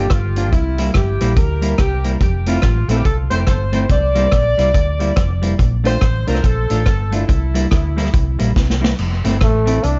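Ska at 142 BPM in F major with a swung, upbeat and cheerful feel: a mellow, tight horn section carries the melody with light vibrato and tape echo over a clean, scooped semi-hollow guitar, a round, punchy hollow-body bass and a gritty, saturated vintage drum kit with dark cymbals and rim clicks. Chords cycle through Gm7, C7, Fmaj7 and Bbmaj7, and a drum fill at 8.6 seconds leads to a clear, roomy trombone solo with scooped notes entering at 9.4 seconds. The production is dark and softly reverberant, cut from a longer piece.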